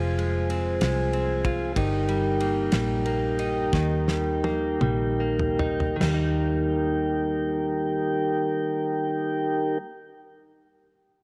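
Tender and swaying, this short excerpt from a longer six-eight pop ballad in Eb major moves at a gentle pace of 47-63 BPM, counted in dotted quarters. A mellow, flute-like tonewheel organ sits up front with sustained chords, its slow rotary speaker adding gentle movement, while a dark, round, foam-muted fingered electric bass anchors the low end just as prominently. A bright, compressed clean electric guitar, recorded direct, picks out a quieter accompaniment beneath them. A damped 70s drum kit with a fat snare, tight kick, ride, splash and toms gives a dry, polished pulse, slowing from 1.8 seconds and rolling into a fill from 3.7 seconds before dropping out at 6.2 seconds. The harmony moves from Fm through Eb/G to Eb, and the organ, bass and guitar carry the rest of the second section on their own in a light reverb with studio ambience.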